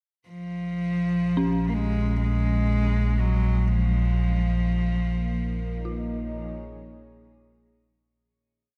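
An intimate cello opens at 0.3 s with airy, sul tasto bowed call phrases in light vibrato, soon joined by a deep, rumbling drone up front and an eerie, inharmonic detuned synth bell whose two unequal loops drift against each other in the background through chorus, shimmer reverb and diffuse delay, before a moody, full-bodied detuned pad arrives at 5.2 s with slowly shifting chords, the whole ominous, unsettling dark ambient drone piece in Bb minor at 61 BPM sinking into cavernous cathedral reverb as it fades out from 4.2 s.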